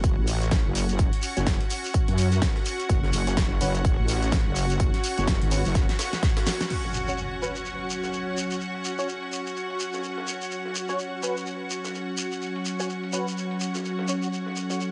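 Bouncy and gritty, this bass house cut moves at 126 BPM in 4/4 with a swung sixteenth-note feel, taken from a longer piece and carrying a light reverb. A heavy, saturated wobble bass sits up front with sidechain pumping and chorus, joined by a punchy layered electronic kick, a big-room dance kit with a huge snare and crash, and a sampler-style breakbeat kit tucked in the background with a high-tuned snare and tambourine. A close, grainy shekere and a bright, biting symphonic string section with light vibrato run the whole way through, the strings sounding distant and carrying sidechain pumping. From 1.4 seconds a hollow, nasal organ stab with ensemble chorus and delay punctuates the groove. Around the drum fill and band accent, the bass, kick and big-room kit drop out by 6.8 seconds. An electronic impact lands at 6.7 seconds as an evolving, resonant pad with a filter sweep takes over the sustained chords for the closing stretch.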